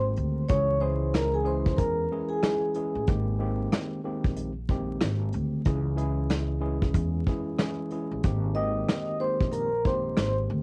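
Nostalgic yet confident, this short cut from a longer boom-bap hip-hop piece rolls along at 93 BPM in 4/4 with a swung sixteenth-note feel in Ab major. A worn, slightly out-of-tune tine electric piano carries the accompaniment throughout, lightly overdriven and colored by cassette tape as if heard through its built-in speakers. Beneath it, a woody pizzicato upright bass with steel strings sits up front, while a soft brush drum kit in a small room adds a dark, smooth pulse of hi-hat, tight kick, rim click and medium-tuned snare, its top rolled off and its sound touched by cassette tape. A close-miked vibraphone with medium mallets takes the melody from 0.5 to 3.0 seconds and returns at 8.5 seconds, its metallic, ringing tone full and dry apart from an analog delay, with a slow motor vibrato. The harmony alternates between Dbm and Abmaj7, and the whole passage has the homespun character of a cassette recording with light reverb and vinyl crackle.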